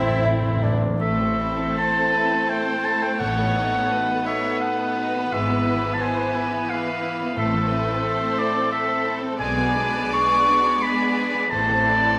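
A slow, yearning and elegiac classical orchestral movement in A minor, in 3/4 at 75-91 BPM with rubato, in which a smooth, vibrato-rich chamber violin section carries the melody over a second violin line and an up-front, roomy oboe, supported by a lush viola section, distant cellos and focused double basses on the bass, background French horn chords, ringing harp arpeggios and round soft-mallet timpani that open with a fill, while a clear bassoon and softly attacked trumpet stabs sound only in the opening second and a mellow, airy flute group touches in at 0.2 s, set in a moderate scoring-stage reverb.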